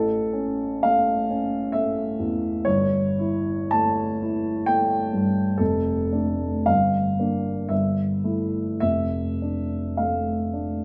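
Yearning and mournful, this short passage cut from a longer romantic nocturne for solo piano unfolds in a slow 3/4 at roughly 50-68 BPM, with a flexible, rubato feel. A single upright piano carries the whole piece from 0.0 to 10.8 seconds, its woody tone and long sustain sitting up front in the mix and spanning a broad range from F1 to A5. The harmony opens on A, moves to A7/G at 2.7 seconds, then settles into a darker stretch of Dm/F, Gm and A5/G before returning to Dm/F at 8.8 seconds. The instrument is set in a wet recital hall with a 1.5-second reverb tail, lending the sombre phrases a lingering, spacious glow.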